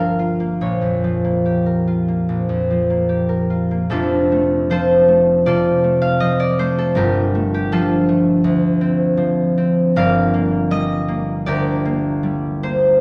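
A solo concert harp, fingerpicked and ringing, opens on a Gm9 chord in this graceful, serene classical fragment in F major, moving with rubato freedom at around 71-83 BPM in 4/4 and tuned to A4 = 436 Hz, its span from F1 to G5 sitting up front yet bathed in a wet recital hall reverb heard from further back in the room, as the harmony drifts to F6 at 3.9 s and arrives at Gm7 at 10.0 s.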